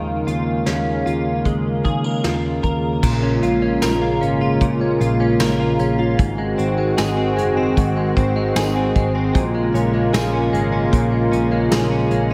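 A wet, spacious reverb gives this dream pop excerpt a big arena sound, with a small room ambience underneath. At 76 BPM in straight 4/4, the mood is haunting and ethereal. Up front, a smooth, detuned sawtooth pad with a slow attack holds sustained chords, treated with chorus and a low-pass filter. Beside it, a bright, twangy clean electric guitar, recorded direct and compressed, picks arpeggios through analog chorus, a low-pass filter and digital delay. A dark, foam-muted picked electric bass with a round, amped tone anchors the low end. A natural, acoustic brush kit enters up front at 0.3 seconds with a tight kick, medium-tuned snare, hi-hat, tambourine and dusky cymbals including a crash, while the harmony drifts from Bbm7 over Eb to Bbm7 at 3.0 seconds, moves to Ab7 at 6.2 seconds, and returns to Bbm7.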